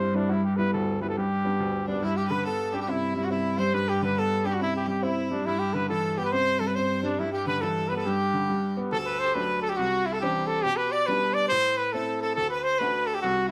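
A moderate studio reverb surrounds this cheerful Celtic polka excerpt in G major at 139 BPM with a swung 2/4 lilt: a mellow, classical-style trumpet carries the melody up front over a woody upright piano with audible action noise, while a gut-string cello holds a bowed G drone until 9.0 s and a distant, nasal fiddle adds a second line from 1.9 s.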